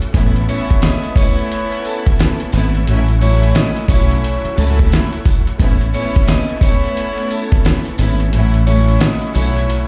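Vinyl crackle and a large studio reverb give this short boom-bap hip-hop cut a dusty, roomy sheen, as if it were played over a big sound system in a bare room. The mood is reflective and dark, riding a swung groove from a gritty, compressed sampler-style drum kit with a thumpy kick, a medium-tuned snare and hi-hat, re-recorded in a small room and set up front. A deep, round fingered electric bass sits just as close. Beneath it, a bowed studio string section floats with a soft attack and a smooth, pure top, while a clean tonewheel organ holds sustained chords in the background, its key click colored by chorus vibrato and a fast rotary speaker. From 0.5 seconds a bright, metallic vibraphone played with hard mallets carries the ringing melody, with a slow motor vibrato and a slapback echo, and a jingly, distant tambourine adds texture from afar. The harmony moves between Aadd9 and F#m7/A, and the kick drops out at 8.3 seconds for the final stretch.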